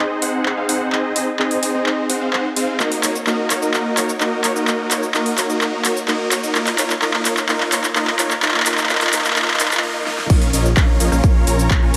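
Driven by a straight 4/4 pulse, this euphoric, powerful progressive house build-up pairs huge, detuned supersaw chords, pumping through a low-pass filter sweep and digital delay, with overdriven big-room drums of metallic hats, handclaps and a huge snare building through a fill, before a short break at 9.8 seconds gives way at 10.3 seconds to a drop where a punchy kick and a thick, mellow chorused saw bass land on Bb minor beneath a vast ambient reverb.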